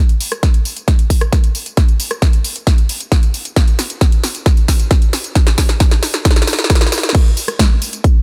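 A big-room dance drum kit opens this short trance fragment at 0.1 s, with a crash cymbal, hi-hat, rim click, snare and tambourine all up front. An electronic kick drum joins at 0.4 s, its punchy, layered tone sitting up front in a driving 134 BPM groove in straight 4/4. The opening stretch is a build-up carried by a drum fill. The kit's snare is punchy and the hats have a metallic edge, and the cymbals, hats, percussion and snare are high-pass filtered, with sidechain pumping on the cymbals, hats and percussion. At 7.1 s the drop arrives, and the euphoric energy hits briefly before the cut, since this is lifted from a longer piece. The production is polished and dry, with little reverb, keeping every hit close and forceful.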